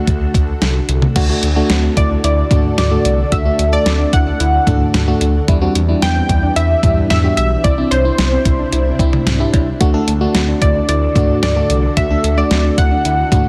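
A dense, heavily limited modern mix with light reverb carries this nocturnal, driving synth-pop excerpt at 111 BPM in straight 4/4, cut from a longer piece and moving through D, Em7, Cadd9 and back to D. A punchy, dark polysynth comp carries the melody through chorus, tape echo and shimmer reverb over a glassy, bell-like FM electric piano, a silky string machine sustaining chords in the background, and a smooth gliding synth bass with portamento. An up-front, thumpy 12-bit drum machine with snare, hi-hat, toms, crash and cowbell drives it all, while a soft round pluck joins at 1.2 seconds with dark arpeggios under tape echo.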